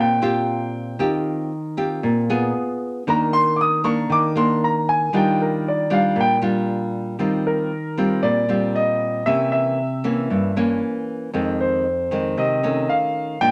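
This romantic, sunny bossa nova in Eb major moves at 116 BPM in a straight 4/4, pairing a grand piano on the melody with a fingerpicked nylon-string guitar in classical style, both warm and up front. The piano's natural tone takes a solo through the first 7.2 seconds, over lush harmony that moves from Eb69 through Cm9/Eb and Ebmaj9, then C7b9 and Fm7, before closing on Faug7/Eb. A moderate studio reverb gives the acoustic pair a gentle sense of room in this short excerpt cut from a longer piece.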